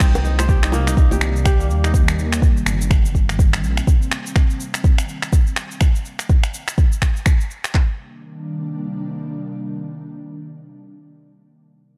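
Driving and warm, this short afro house excerpt moves at 124 BPM in 4/4 with a swung sixteenth-note feel, resting on a Cm9 chord in C minor. A deep house drum kit sits up front, its deep kick and handclaps sounding layered and tape-warm, while a second, quieter kit layer adds cabasa, crash cymbal and finger snaps until about 7.7 seconds. Tight, high-tuned acoustic bongos sit in the background in a small room, heard only briefly near the start. A rumbling, detuned sawtooth bass and a crisp, fingerpicked kora playing ringing arpeggios both pump against the kick, the kora passing through a filter sweep, low-pass filtering and delay before both parts stop before 4 seconds. An ethereal, airy pad holds mellow sustained chords with ensemble chorus and built-in reverb through to about 11.2 seconds, carrying the closing section after the drums drop away, all within a dark, digital-sounding ambience.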